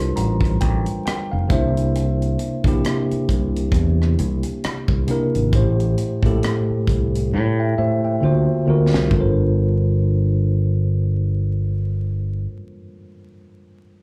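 Sultry and introspective, this neo-soul R&B excerpt, cut from a longer piece, opens on a fill from a worn, slightly out-of-tune tine electric piano, lightly overdriven through its built-in speakers and bathed in plate reverb, drifting over Gm11, C9, Am7 and D7alt with a swung sixteenth-note feel. A growly, punchy fingered electric bass sits up front beside a tight funk drum kit with a high-tuned snare, rim clicks and toms, whose fill leads into the second section before the drums stop at 9.4 seconds and the bass at 12.5 seconds. The whole performance comes across as a live gig heard through a club PA, with light club reverb and vinyl crackle, leaving the piano to ring out alone until 14.0 seconds.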